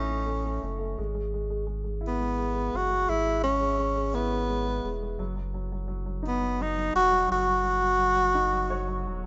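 Heartfelt and romantic, this short cut from a longer six-eight pop ballad sets a close-miked tenor saxophone up front, singing a jazz-style solo melody with a soft attack, vibrato and analog delay over woody upright piano accompaniment and a deep, round sine sub bass, all in a small room with light reverb and the rough, dull-topped sound of a home demo, before the piano adds a brief fill at 8.4 seconds.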